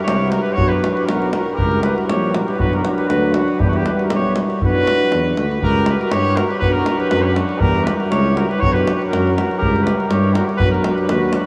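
A huge, dreamy reverb with a long 7.5-second tail bathes this short Balkan brass band excerpt, set in B harmonic minor at 120 BPM in a straight 2/4 with a restless, virtuosic mood. A punchy trumpet carries the melody up front with analog delay, while a flugelhorn with light vibrato plays a distant second line. Two euphoniums, one close-miked and one warm, give background accompaniment, a soft-attack tuba holds the bass, and a deep davul drives the percussion through a repeating cycle of Em, Bm and C#dim chords.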